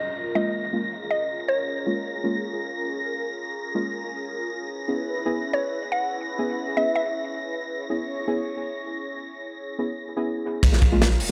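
A deep, mellow chord stab sits up front in this dark, frenetic drum and bass and jungle excerpt at 159 BPM in Bb phrygian. Its warbling, vintage tone is coloured by chorus and dub echo as the harmony moves from Bbm7 to Dbm7 at 4.6 seconds. Beneath it, an airy, breathy pad holds sustained chords through phaser and a gritty 12-bit sampler character while a filter sweep runs across it, and a wind-like tuned noise texture hangs high in its own reverb. A woody, round, mallet-like FM pluck offers brief melodic phrases, also trailing dub echo, and an electronic downlifter and sub drop sit in the background at the opening and close. At 10.6 seconds the music lands on an impact: a crunchy, saturated breakbeat kit with punchy kick, medium-tuned snare, hi-hat, ride and crash bursts in up front alongside a soft dub sub bass on Bb1, as the chords return to Bbm7, all within a light reverb.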